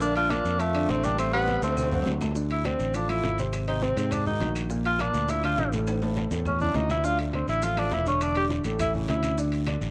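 A breathy, whispered tenor saxophone leads this driving, sultry Afro-Cuban jazz fragment in D minor at 205 BPM, its mellow subtone and scooped, vibrato-laden notes sitting intimately up front as a clearer second tenor line trails in the background until 2.2 seconds and the lead moves into a solo from 2.4 seconds, while a warm baby grand piano comps, a bright fingered electric bass drives from up front, and hard-handed, low-tuned congas and round bongos join ringing, saturated timbales, raspy guiro, grainy maracas and woody claves, all soaked in a moderate spring reverb and the intimacy of a home cassette recording.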